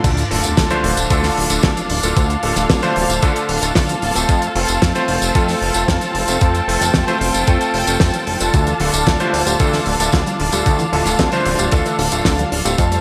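Sunny and playful, this 113 BPM italo disco excerpt moves through D minor and F in a straight 4/4, built on an overdriven, thumpy electronic kick and a dry, up-front 70s drum kit with a fat snare, hi-hat, tambourine and crash under gated reverb. A glossy, chorused synth bass with pulse-width movement anchors the low end, while a warm vintage electric grand piano with a clangy low register plays stabs and a muted, veiled string section holds sustained chords. A round, nasal analog pluck arpeggiates in the background, heard at the opening and again from 8.5 seconds, and a very quiet sub drop marks the impact at the start, all set in a bright 1980s-style digital mix with lush hall reverb.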